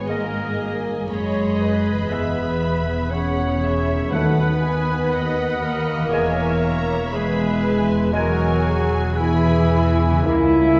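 A slow, rubato orchestral passage at 59 BPM opens at once in G-sharp minor, with a melancholic, yearning mood, and it is cut from a longer piece. A violin section carries the tune in a soft-attacked, lush high register, while a second violin section and a smooth viola section sing beneath with rich vibrato, over a dark, woody cello section and a bowed double bass section at the bottom. The French horn section holds tight, roomy sustained chords as the most prominent voice, joined by a very quiet, vintage-toned trombone section, while a concert harp rings softly through its arpeggios. Around the strings, a hollow, pure flute, a close-miked oboe, a clear clarinet and a present bassoon weave their own lines, with the flute sounding from the start and the other woodwinds entering just after. Timpani struck with hard mallets add a brief, articulate accent from 4.1 to 5.6 seconds as the harmony moves from E to B7 over D-sharp, before it returns to E and settles on a half-diminished chord at 10.3 seconds. 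The whole ensemble sits further back in a reverberant scoring stage, tinged with a faint vinyl crackle.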